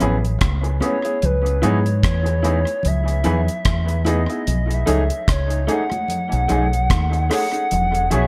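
Lovers rock reggae with a romantic, sweet mood, this short excerpt cut from a longer piece has a reedy, woody FM lead carrying the melody with a soft attack, vibrato, chorus and tape echo over a natural grand piano and a twangy, slightly broken-up electric guitar playing stabs. A dark, round fingered dub bass sits punchy and up front beside a dry reggae drum kit with a tight kick, hi-hat and rim click treated with gated reverb and tape echo. High-tuned congas with a thick skin and soft hands stay in the background, while the band moves through Amaj9, C#m7, B13 and E6 in light reverb.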